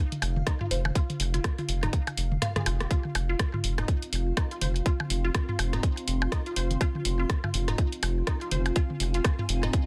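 A tight, up-front electronic kick drives this clinical, cool minimal techno excerpt alongside a round, deep analog bass with sidechain pumping, a garage drum kit with rim click and a soft-clipped snare, tape-toned electronic toms and percussion blips with delay, a squelchy, resonant blip pluck run through phaser, delay and sidechain pumping, and a cloudy, evolving granular pad in its own reverb, with the kick dropping out under a drum fill at 2.4 seconds before the drop lands at 2.9 seconds in a dense, heavily limited mix.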